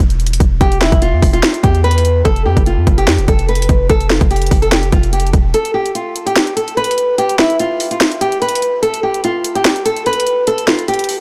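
Brooding, menacing hip hop in a trap style at 146 BPM with a half-time feel, cut from a longer piece and captured as a blown-out, overdriven recording. A dark, small-sounding nylon-string guitar enters at 0.6 seconds, fingerpicked up front with digital delay, over an overdriven electronic trap kit of hard-clipped kick, sharp snare and bright hats. A heavy, punchy 808-style sine bass with a noise layer and fast, decaying hits drops out with the kick at 5.5 seconds.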